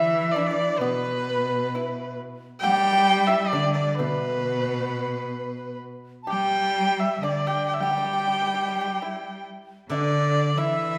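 A rubato 2/4 pulse around 66 BPM carries this festive, graceful Chinese chamber piece in G gong mode, where an earthy, up-front erhu sings the melody with light vibrato and portamento over a rich, focused bowed cello, a mellow, hollow large dizi with a buzzing membrane in the background, and a dry, percussive fingerpicked pipa, while a silvery steel-string zither rings in at 9.9 s, the ensemble heard from further back in a recital hall's wet reverb.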